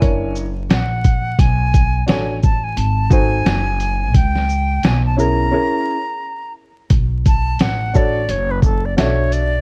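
Jazz-hop in a cool, mellow mood, this cut from a longer piece sets an airy, soft-attacked silver flute melody with vibrato over smooth, vintage grand piano chords with short sustain, a woody pizzicato upright bass on gut strings, and a muffled, compressed, pitched-down, tape-warm sampler-style kit with a thumpy kick, medium-tuned snare, hi-hat and shaker. The dark, warm production carries vinyl crackle and little reverb, with the drums, bass and piano sitting up front. A break arrives at 5.5 seconds, and a flute solo follows at 6.9 seconds.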